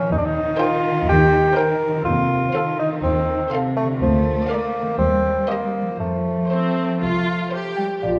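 A mellow, up-front bassoon opens this mischievous, whimsical film cue at 122 BPM over ringing harp arpeggios, a rich cello section with portamento and a dark double bass section, joined at 0.6 seconds by a very quiet, distant violin melody, a lush background second violin line and clear violas, before a woody xylophone, dark clarinet and hollow flute slip in at the very end, all in a moderate scoring-stage reverb.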